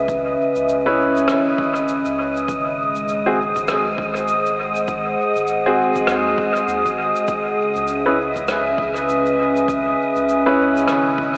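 Meditative and spacious, this ambient dub excerpt centres on an up-front, warbling, tape-like pad with chorus, holding sustained C#m7 and G#7 chords over a round sub bass and a breathy, wind-like tuned noise texture, while a punchy electronic kick sits in the background, a distant shaker and rim click carry dub echo, and a woody upright piano adds short stabs with echo from 0.9 s, the whole mix soaked in cavernous reverb with a dreamy AM radio sound.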